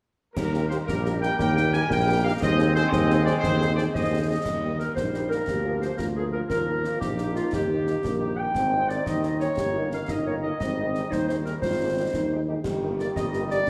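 A mellow trumpet section carries the melody of this spirited, festive military-style march for wind band, its tight, vintage-tinged tone touched with light vibrato. Set in Eb major at 117 BPM in a straight 6/8, the trumpets are paired with an up-front woodwind section that plays a softly attacked second line. Beneath them, a clear, present trombone section holds sustained chords, and a dark, very quiet French horn section adds distant accompaniment. A solo tuba with a smooth top anchors the bass, while concert snare drum, clash cymbals and concert bass drum supply acoustic percussion from a small room, the cymbals sounding dusky. At 5.0 s, shortly after the music moves into its second section, a dark euphonium with vibrato joins with its own second line, and the harmony passes through Bb7/D, Eb7/G and Abmaj7. A moderate scoring-stage reverb gives the band a sense of space, and lossy compression artefacts colour the sound of this passage, which is cut from a longer piece.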